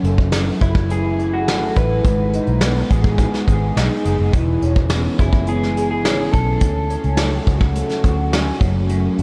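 Sunny and dreamy, this short indie pop and bedroom pop excerpt moves at 105 BPM in a straight 4/4 in E major, its chords drifting from F#m7 through G#m and E6 to Dmaj7 before returning to F#m7. A soft brush kit of hi-hat, tight kick and medium-tuned snare sits up front yet sounds roomy and distant, with a rolled-off top, while a vintage muted fingered electric bass gives a dark, round and punchy low end. An electric guitar through a small old amp carries the accompaniment with a bright, twangy, slightly broken-up picked tone, colored by analog chorus and vibrato. A second guitar through a small old amp, darker and lo-fi, plays the melody from 0.6 to 7.4 seconds with subtle chorus and analog delay. At 5.1 seconds a warbly, nostalgic tape-like pad with a slow attack slips into the background, holding sustained chords with chorus and its own built-in reverb. The whole mix is soaked in a huge ambient reverb that gives it a dreamy feel.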